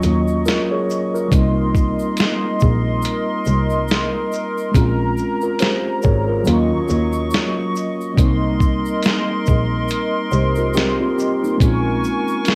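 A hazy, reflective lo-fi hip hop excerpt at 70 BPM in C phrygian, with a swung 16th-note feel, cycling through Ebm7, Cm7 and Bbm7 chords. Up front sit a mellow, clean tine electric piano and a thumpy, muffled sampler-style drum kit with 12-bit grit, joined by a hollow, flute-like pad with chorus, a dark, veiled bowed double bass playing muted with vibrato until 12.0 s, and a grainy egg shaker tucked in the background. Cassette tape colours the piano, pad and drums, and a moderate studio reverb adds a home-recorded haze.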